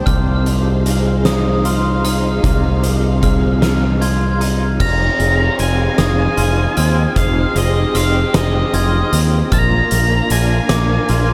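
A growling, overdriven electric bass sits up front in this brooding, cathartic post-rock excerpt, its bright, amped tone anchoring a slow, heavy 6/8 sway. An oversized, low-tuned drum kit enters at 0.1 s with a punchy kick, fat snare and dark cymbals, sounding saturated and gritty in a pumping stone room. Beneath them, an electric guitar through a small old amp plays slightly broken-up, lo-fi arpeggios with tremolo and tape echo. A glockenspiel with soft plastic mallets adds ringing, bell-like arpeggios in the background, and a distant, lush string section holds bowed chords with vibrato and portamento. At 4.8 s, as the harmony moves to Fm7, an octave-fuzz lead guitar enters with a dark, distorted melody through tape echo, all set in a dreamy mix soaked in huge ambient reverb.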